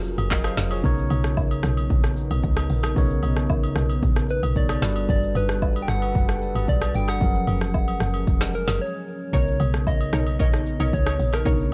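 A relaxed, soulful amapiano groove opens with an up-front afro-pop drum kit of deep kick, woody snare, crisp hats, handclaps, rim click and shaker, a punchy, percussive log drum bass, a clean tine electric piano through a combo amp, and a moody, detuned ambient pad glowing in the background with chorus and reverb. Agogo bells and woodblock join just after the start, a round, gentle synth lead with chorus, vibrato and digital delay enters from 4.3 seconds, and a full-bodied, warbling vintage chord stab arrives after a short break at 9.3 seconds, all over major-ninth chords.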